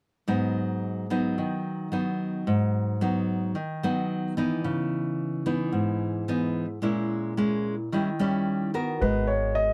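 Bossa nova at 110 BPM in G# minor, smooth and melancholic, cut from a longer piece and heard through close, detailed microphones with light reverb. A warm, fingerpicked classical nylon-string guitar plays alone up front from 0.3 seconds, moving through G#m7, C#m9, A#m7b5 and D#7b9. At 9.0 seconds, as the harmony settles on G#m9, a dark concert grand piano with deep bass takes the melody up front, joined by a woody, pizzicato upright bass and a clean mellow tine electric piano sitting in the background.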